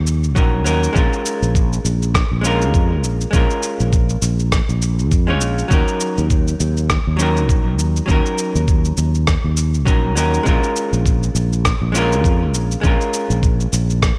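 A relaxed 101 BPM groove in 4/4 with a 16th-note swing sets the pace for this sunset chillout excerpt in Eb minor, cut from a longer piece. A sampler-style cabasa and rim click with a tape-warm, compressed edge enters at 0.1 seconds, joined at 0.4 seconds by a thumpy, gritty electronic kick drum. Underneath, a sustaining fretless electric bass sits up front with a growly, amped tone, holding to the low register between Bb1 and F2. A dark, clean hollow-body jazz guitar, picked and treated with delay, provides accompaniment over a slow alternation of Ebm7 and Bbm7 chords. The production has a bright, 1980s-style digital sheen with light reverb, giving the piece an easygoing, warm mood.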